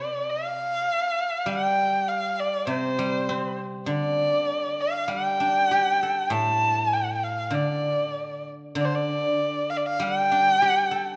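This is Chinese traditional music for a small chamber ensemble, an 11.2-second cut from a longer piece with a pastoral yet festive mood. It moves at a rubato 99 BPM in 4/4, in the G shang mode. A single bowed erhu carries the melody up front in a high register. Its tone is dark, with a soft attack, expressive vibrato and sliding portamento. Beneath it, a guzheng played with fingerpicks gives acoustic accompaniment across a broad span of lower and middle notes, its silvery strings ringing beneath the bowed line. Both instruments play throughout, set in a moderate recital hall reverb that adds gentle space around them.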